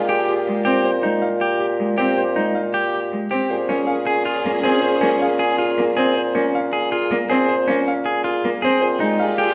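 Bathed in a wet recital-hall reverb with a top end capped at 7.9 kHz, this hypnotic, meditative excerpt of minimalist classical pattern music pulses in 7/8 at 316 BPM in Bb dorian: an up-front, clean, picked electric guitar plays arpeggios, a clear solo bassoon holds a Bb2 bass, a brilliant grand piano carries the melody in the background, and a distant, bowed cello with smooth vibrato supplies accompaniment, while a lush symphonic string section and a mellow, roomy soprano saxophone appear only in short passages at 0.0, 3.5 and 8.8 seconds as the harmony moves from Fmadd9/Bb to Bbm7 and back.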